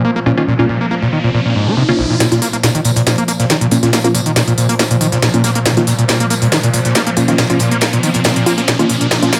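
Dark and hypnotic, this excerpt of driving peak-time techno at 139 BPM in Bb minor opens with a screaming, squelchy acid line up front, distorted and chorused with dub echo and filter sweeps, over a swarming granular drone, a background riser and crisp, wave-folded wavetable chord stabs, before a build-up at 2.2 seconds brings in a cracking, tape-warm techno drum kit with smooth hats, layered over a dark acoustic rock kit with tambourine in the background, all within a moderate stone room.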